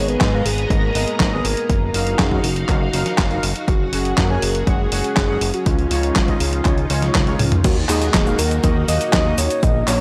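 A soft, octave-layered synth lead carries the melody in this bittersweet, melodramatic italo disco passage, its round, dark tone blending triangle and sine with a sub octave, vibrato, chorus, analog delay and shimmer reverb. Beneath it, a vintage string machine spreads lush, slow-attack chords through phaser and ensemble chorus, while analog synth brass adds bold, mellow stabs with a filter sweep and its own vibrato. A fat, detuned sawtooth bass with a wave-folded edge anchors the Eb minor harmony, moving through Abmadd9, Gbsus2 and Dbadd9 at a straight 121 BPM in 4/4. A punchy, overdriven analog kick sits alongside a clean 12-bit drum machine whose tape-tinged snare, handclaps, hi-hat, cabasa, toms and crash sit up front after re-recording in a large room. A drum fill from 7.3 seconds leads into a new section at 7.6 seconds landing on Ebm, all captured as a dry, gritty hardware recording with transformer saturation and light reverb, cut from a longer piece.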